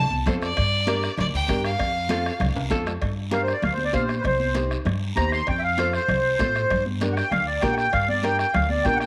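A moderate echo-chamber studio ambience frames this driving, fiery cumbia excerpt in G minor at 195 BPM, where a bright, intense bowed violin with vibrato solos up front until 2.7 seconds over woody pizzicato upright bass, fingerpicked nylon-string guitar, soft-beater bombo, hard-handed high-tuned congas, raspy guiro and very quiet ringing cowbell and timbales, before a drum fill hands off at 3.0 seconds to a reedy, sweet accordion solo with light tremolo tuning over chords moving between Gm, Cm and F.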